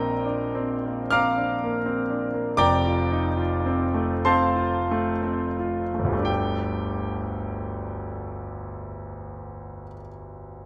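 Nocturnal and hazy, this short passage cut from a longer impressionist classical piece for solo piano drifts in G minor at a very slow, rubato pace of 28-42 BPM, counted in dotted quarters in 6/8. A concert grand plays alone throughout its 10.7 seconds, spanning F1 to F6, its tone clear and polished with deep bass and long sustain. Close, detailed microphones place the instrument up front and intimate, catching the audible noise of its action under a light reverb. The opening section slows as it moves from Bbadd9 to Fadd9, and at 6.3 seconds a second section settles onto Gsus2, leaving the harmony suspended and open.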